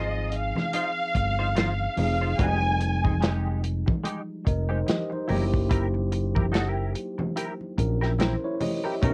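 A lush, expressive violin section with vibrato and portamento carries the melody up front until 3.2 s in this romantic, smooth 1970s-style soul fragment at 72 BPM with a swung 16th feel, over tine electric piano and a clean, hollow-body semi-hollow guitar riff with ensemble chorus, both carrying the same cassette-tape colour as the violins, a round, dark fingered bass, a tight, dry soul drum kit entering at 0.3 s, ringing low-tuned congas in the background, and a delicate, bell-like celesta that drops out at 5.7 s, as the harmony moves through Ab6, Fm9 and Gb7b9 in a lightly reverberant home cassette sound.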